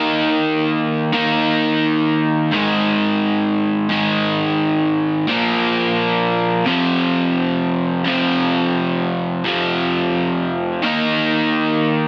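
A crunchy, bright overdriven electric guitar, picked, double-tracked and up front, plays alone in free time through this rowdy, energetic punk fragment cut from a longer piece, moving through Eb5, Ab5, Bb5 and F5 power chords before returning to Eb5 at 10.8 seconds, all set in a small room with a dense, heavily limited modern master.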